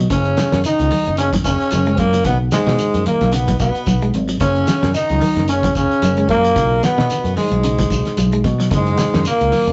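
A rough rehearsal-room sound with moderate reverb frames this joyful, funky afrobeat excerpt at 111 BPM in F# mixolydian, where a veiled, bucket-muted trombone carries the melody over a raspy tenor saxophone and a smooth bass trombone with tape echo, a round fingered electric bass, clean picked guitar arpeggios in the background, a dry 70s drum kit with fat snare and tight kick, bright thin-skinned congas and a grainy shekere, all cycling between F#5 and B6 chords before landing on F#add9.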